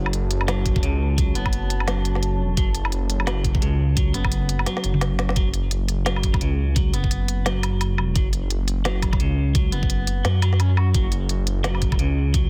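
A moody, detuned analog pad with chorus and sidechain pumping sits in the background over a deep, rumbling, saturated saw bass to open this spacious, heavy half-time drum and bass excerpt at 172 BPM in F# minor, joined by a swung organic electronic kit with a woody snare and crisp hats, twangy clean electric guitar arpeggios roughened by 12-bit sampler grit and tape echo, and a knocking electronic kick, with a drum fill from 4.7 seconds before the pad stops at 5.4 seconds and the second drop continues in a dense, heavily limited master.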